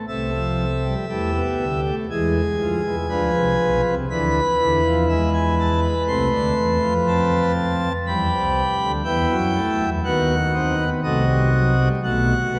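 A straight 4/4 pulse at 60 BPM carries this stately, elegant baroque-style four-part fugue in A minor, cut from a longer piece, where a solo pipe organ's full principal chorus with romantic voicing sits up front across a range from A1 to C6, moving from Am/C through E and E7/D to Em, B/D# and a closing B7(no3) at 12.0 seconds, all bathed in a cathedral reverb with a long 4.4-second decay and a layer of vinyl crackle.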